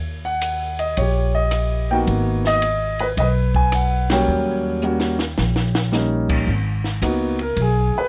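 An open, long-sustaining concert grand piano carries the melody up front through this moody, swinging jazz piano trio fragment in G# minor at 109 BPM, over woody pizzicato upright bass and a dry cocktail drum kit with dark cymbals and a punchy kick, all in light reverb, with a band accent at 4.0 s, a drum fill from 4.8 s and a piano solo from 6.5 s over G#m7 and altered D# chords.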